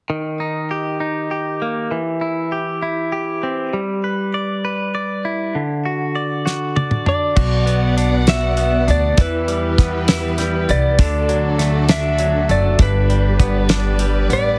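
A swaying six-eight pulse carries this heartfelt, tender pop ballad, opening with a bright, twangy clean electric guitar bathed in spring reverb. A drum fill at 6.5 seconds brings in a dry, damped 70s kit with a fat snare and tight kick. A slightly broken-up slide guitar takes up the melody at 7.1 seconds, and at 7.4 seconds a woody, thumpy pizzicato upright bass and a dark, lush bowed string section join, all set in a small room with a heavily compressed, radio-like sound.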